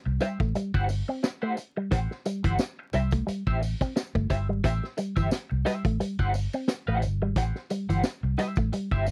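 A twangy electric guitar run through an envelope filter carries the riff up front in this sly, funky excerpt at 88 BPM in A dorian, resting on a single Am7 with a 16th-note swing. Beneath it, a dark, foam-muted vintage bass sits round and punchy, while an acoustic vintage kit with a high-tuned snare, tight kick and rolled-off top drives the groove and a jingly tambourine shimmers in the background. A compressed, slightly broken-up second guitar with wah and tremolo fills in the accompaniment, all captured in a dry, close 1970s-style studio sound with vinyl crackle.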